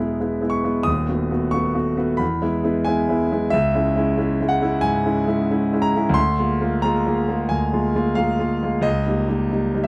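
A clear concert grand piano carries this romantic character piece alone, sounding intimate and up front with deep bass, a natural tone and audible action noise, spanning D#1 to D#6. The bittersweet, passionate mood unfolds at 90 BPM in 4/4 with a rubato feel, moving from E through B7/D# and C#m to A#7/D and D#7/C#. Close, detailed microphones and light reverb frame this 9.9-second fragment cut from a longer piece.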